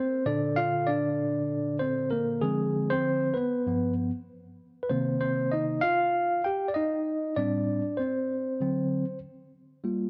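Hip hop at 97 BPM with a 58% swing on the 16ths, this brief, cool and smoky fragment of a longer piece features a lone tine electric piano playing from 0.0 to 10.1 seconds, spanning G2 to G5. The piano sits up front with a clean, warm tone heard through its built-in speakers, bathed in a moderate echo chamber reverb with a 2.0-second decay. Its jazzy changes move from Bbmaj7 through Dm7b5, G7 and Cm7 before landing on Amadd11 and D7.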